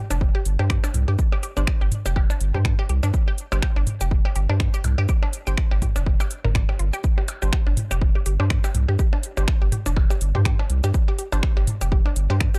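A squelchy, phased blip pluck opens this hypnotic, clinical minimal techno excerpt with a swung 16th-note feel, quickly joined by a thick, saturated sub bass pumping up front, an overdriven punchy kick, a booming analog drum machine with finger snaps, metallic hi-hats and shaker, tape-toned electronic percussion blips and toms, and, from 0.6 seconds, a hollow, mellow organ stab with chorus and delay sitting in the background, all captured in a dry, gritty hardware sound.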